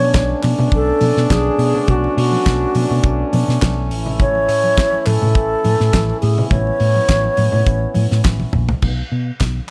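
A dry, close sound with little reverb frames this short, driving disco cut at 104 BPM in a straight 4/4, its sultry mood set over a Bm9 chord that moves to A at 3.9 seconds. An airy alto flute carries the melody up front with vibrato and tongued, expressive phrasing, while a French horn section holds sustained chords in a distant, roomy classical style with light vibrato. Underneath, a hollow-body short-scale electric bass, played fingered, sits forward with a dark, round, amped tone. A damped 70s acoustic kit keeps the beat with a fat snare, tight kick and dark cymbals, and plays a fill from 8.2 to 8.8 seconds. Very quiet, bright congas with soft hands and a vintage, band-limited character add colour, and a hollow group handclap sits in the background until the music breaks off at 9.7 seconds.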